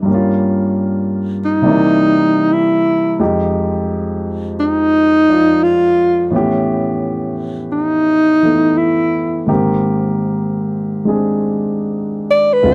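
Jazz at 76 BPM in 4/4 with a swung eighth-note feel, this intimate, smoky passage is cut from a longer piece and tuned to A4 = 441 Hz. A concert grand piano opens alone as accompaniment, its open tone anchored by a deep bass and placed up front. At 1.4 seconds the alto saxophone enters to carry the melody as a solo, its warm subtone shaded with light vibrato and scooped notes in a classic jazz manner, sitting a little louder than the piano. The harmony moves through Gm7b5, C7 and Fm7 before settling on A9 and then Abmaj9 toward the close of the 12.7-second passage. The sound is dry and close, like a 1970s studio session, with only a touch of small-room reverb around the two players.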